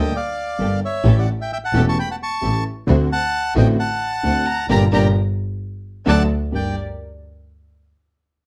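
A reedy, dark bandoneon carries a tense, melancholic tango melody over the intimate piano's deep bass and audible action noise, a biting, nasal bowed double bass up front, and distant sul tasto string stabs, with an expressive violin line with portamento joining at 4.2 seconds before a band accent at 4.7 seconds in this short cut from a longer piece.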